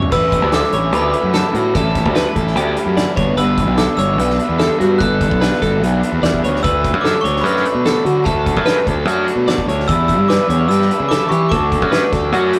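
A growly fuzz bass sits up front in this playful, wistful slice of math rock and midwest emo, joined by a sparkling, close-miked glockenspiel melody struck with hard plastic mallets and a clean, compressed twelve-string electric guitar spinning arpeggios. Behind them, a double-tracked overdriven stack guitar plays a background riff, a dark, slightly broken-up guitar through a small old amp adds very quiet lo-fi accompaniment, and a loose, roomy indie drum kit with dark cymbals and a tight kick keeps a straight 4/4. The rough rehearsal-room sound carries light reverb and saturation as the harmony moves from A7sus4 through Gmaj7, Dmaj7 and Em7 before landing on D.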